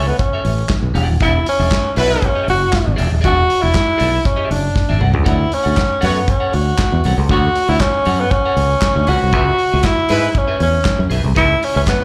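A straight 4/4 disco groove from a small-room soul drum kit with a tight kick and medium-tuned snare, broken by a drum fill at 4.8 seconds, drives a growly, up-front fingered bass, twangy picked electric guitar accompaniment with vibrato and slapback echo, and brief, clear horn-section stabs, while a breathy tenor saxophone with scooped notes and slapback carries the glamorous, sultry melody and a very quiet, crisp group handclap joins from 5.8 seconds, the band heard as a live club gig through the venue's PA in this cut from a longer piece.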